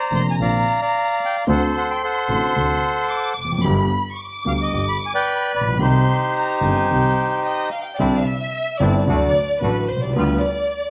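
A rubato 4/4 pulse at 111 BPM carries this dramatic, melancholic tango fragment in C minor, where a reedy, dark bandoneon sings the melody up front until 7.7 seconds over a distant, lush violin section with expressive vibrato, a concert grand piano accompaniment with deep bass and short sustain, and a focused, close double bass bowed by a single player. At 8.0 seconds the violin section takes a solo that runs to 10.9 seconds, while the bandoneon turns to quieter, airy stabs. A moderate large studio reverb wraps the ensemble, and the harmony moves from Bbadd9 through D7 and G to Cm before closing on G7/D.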